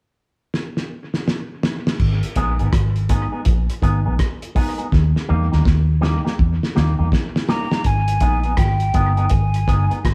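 Roots reggae at 82 BPM in 4/4 with a swung sixteenth feel, this meditative, hypnotic excerpt sits in G# harmonic minor, cut from a longer piece. A cloth-damped, thuddy drum kit opens at 0.5 seconds with a fill, its muffled, gritty sound, dark cymbals, fat snare and tight kick set up front and trailed by dub echo, and it fills again between 4.9 and 7.8 seconds. At 2.0 seconds a vintage muted fingered electric bass arrives on G#m, round and punchy, as the harmony moves to D# and back to G#m. A bright, twangy electric guitar through an envelope filter joins as clean, compressed, picked accompaniment, sitting lower in the mix. Near the end, at 7.5 seconds, a breathy, hollow jazz flute enters with the melody, sounding distant and mellow with vibrato and tongued notes. The band plays live together in a moderate stone room with a 1.1-second reverb.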